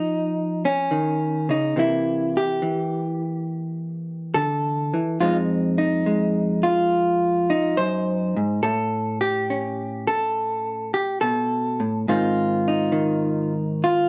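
A lone vintage hollow-body electric jazz guitar opens this short excerpt, its clean, picked tone dark and compressed and placed up front. It plays solo jazz in a relaxed swing, carrying a smoky, late-night mood across a range from F2 up to C5. The harmony moves from Db through C7 and Fm7 to A9, arriving on Ab at 12.1 seconds before the passage ends at 14.1 seconds. A moderate small-room reverb gives the guitar a close, intimate space. Over it all sits the character of worn, warbling cassette tape, with a warbly pitch drift that lends the recording an aged, wavering quality.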